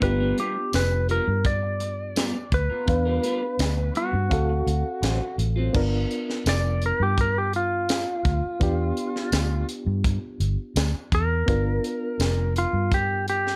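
A twangy, compressed lap steel guitar carries the melody and moves into a slide solo at 5.7 seconds in this swaggering, gritty straight-eighth soul blues excerpt at 84 BPM in G mixolydian, over a round, foam-muted electric bass up front, a tight funk drum kit with a high-tuned snare and tambourine, a barky, reedy electric piano with fast tremolo, and phaser-tinged stabs from a slightly broken-up electric guitar through a small old amp that drops out at 5.8 seconds, set in a lightly reverberant space.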